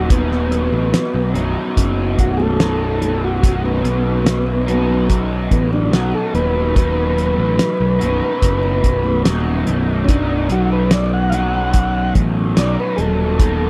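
A mellow, heavily vibrato-laden combo organ with slapback echo carries a solo through this trippy, mysterious psychedelic rock excerpt, backed by a bright, double-tracked garage guitar riff with overdrive and flanger, an up-front fuzz bass, a damped 70s drum kit with a fat snare and tight kick, and very quiet, distant congas that enter at 1.4 seconds, captured in a close 1970s-style studio sound with little reverb.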